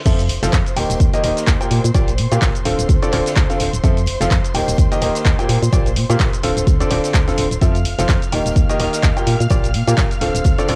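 A swung 127 BPM groove of punchy electronic kick, analog drum-machine claps, hi-hat, shaker and crash, with a very quiet acoustic kit's hi-hat and snare beneath, drives this uplifting piano house drop in F major, where a bright, worn baby grand riff with audible action noise sits up front over a hollow, dark, organ-like FM bass, as distant, lush bowed violins hold sustained chords in the background through an Fmaj7–Eb–Bb6–Dm7 cycle, the piano, bass and strings all pumping with sidechain while cassette tape grit and studio reverb colour the home-recorded sound.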